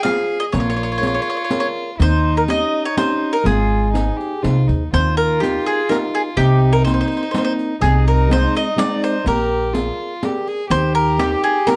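In a straight three-beat lilt, this romantic, sunny Italian folk serenade, cut from a longer piece, sets a woody, double-string mandolin melody up front over a pure, floating sul tasto violin second line, classical thumb-plucked nylon-string guitar with audible finger squeak, a thumpy gut-string upright bass plucked pizzicato from 0.5 seconds, and a riq's bright jingles in a live room, under light reverb and a dark production.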